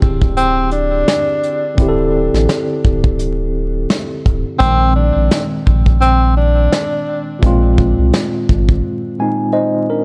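Vinyl crackle and studio reverb give this dark, moody boom-bap hip-hop cut a dusty, late-night sheen, with a lightly swung groove. A clean tine electric piano runs through a combo amp with a medium tremolo and a cassette-tape tint, its tone narrowed by filtering as it plays the D9sus4 and Bb9sus4 chords up front. Beneath it, a deep, round sub bass with a fast attack and sustained notes anchors the low end, while a soft brush kit, recorded in a small room with a tight kick and a medium-tuned snare, keeps the beat close and intimate. From 0.4 seconds a breathy tenor saxophone plays a mellow, jazz-style solo in a narrow register, full of subtone, vibrato and scooped notes with a smooth top, filtered and touched with delay. At 8.8 seconds the bass and drums drop out for a short break, leaving the electric piano alone until the clip is cut off at 10.0 seconds.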